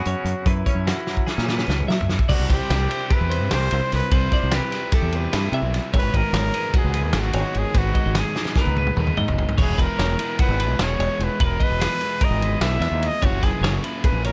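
A trumpet and a clean twelve-string electric guitar open together over a background twangy electric guitar with tremolo, as the drums and a growling overdriven bass arrive almost at once in this intricate, playful excerpt of math rock and midwest emo. Set in 9/8 at 296 BPM counted in eighths with a straight feel, the piece moves from F#9sus4 through Cmaj9, G#m7 and Eadd9(#11). The close-miked trumpet carries the melody with vibrato and scooped notes in a punchy pop style, while the bright, compressed twelve-string spins clean picked arpeggios through an analog delay. At 2.3 s, after a drum fill, the tremolo guitar drops out and a crunchy, double-tracked overdriven guitar takes over with a picked riff. The loose acoustic kit sits up front with a punchy kick, medium-tuned snare and a rolled-off top, adding another fill at 8.4 s, and the bright, direct-and-amped bass sits up front beside it, all in a dry studio room with little reverb.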